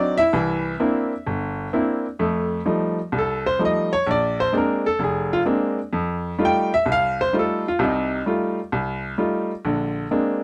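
The sound is dry and close, with the intimate, up-front feel of a 1970s studio and barely any room around it. A bright upright piano carries this short solo jazz cut from a longer piece, its tone woody and polished with a short sustain that keeps each note crisp. The tempo sits at 129 BPM in 4/4 with a swung eighth-note feel, giving the music a sophisticated yet playful lilt. The piano ranges from a deep F1 up to G5, moving through rich ninth-chord harmony built on C9, F9 and Bb9. After a brief opening phrase, a new section begins at 2.2 seconds, where the piano takes a more featured solo turn that runs to the end at 10.4 seconds.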